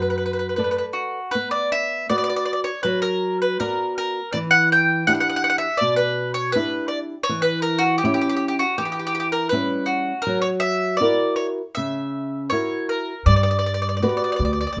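A bright, double-strung mandolin picks a passionate melody up front, over fingerpicked flamenco guitar with fresh strings and a woody pizzicato upright bass that drops out at 0.8 seconds and returns at 13.3 seconds, in this romantic Italian folk serenade in B harmonic minor, which moves rubato at 80 BPM in 4/4 through moderate studio reverb as its harmony travels from Bm through Em7 and F#7 to Gmaj7.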